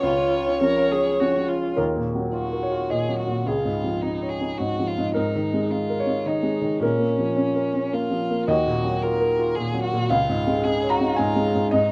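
Moving in a flexible, rubato three at 108 BPM, this neoclassical piano and strings piece in Eb minor carries a melancholic, longing mood, and it is cut from a longer piece. A felt-muted upright piano sits up front throughout, its soft, intimate tone thin with felt and a little vintage, spanning low bass to high treble as accompaniment. A rich, expressive solo violin carries the melody across the full length, bowed with vibrato and portamento and placed up front, while a single clear, even viola supports it only until 1.8 s. A very quiet concert harp rings out fingerpicked arpeggios in a mellow acoustic voice until 5.0 s. The harmony drifts through colored chords such as Ebmadd9, Dbadd9 and Absus2, passing through Bbm before returning to Ebmadd9 and Dbadd9, all set in a moderate studio reverb.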